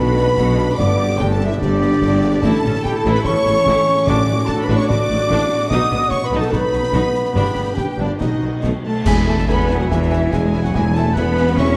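Heroic, soaring cinematic adventure score at 145 BPM in 4/4, cut from a longer piece, where two lush vibrato violin sections carry the melody and a second line alongside a very quiet airy flute group, a mellow, roomy clarinet, bowed violas, prominent smooth-topped French horn chords and a ringing thumb-plucked harp, while a clear double bass section, a dark punchy tuba and expressive portamento cellos hold the bass. Concert snare, bass drum and clash cymbals sit in the background, articulate timpani strike at 4.1 s and again at 10.7 s, a cymbal swell with clash cymbals and bass drum enters at 5.7 s, and a present oboe joins on a full-band accent at 9.1 s, all set in a wet concert hall reverb with a dark production.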